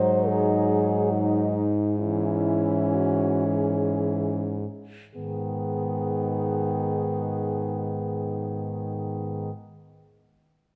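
Set in the moderate reverb of a scoring stage, this melancholic, elegiac fragment of a classical piece for horn quartet unfolds in free time and slows through its first 5.2 seconds. A dark French horn with a smooth top carries the melody over a warm second horn, while two mellow horns fill out the lower voices: a distant, roomy accompaniment with light vibrato and a soft attack, and an up-front bass. All four play together throughout, and the harmony settles onto a minor chord at 5.2 seconds.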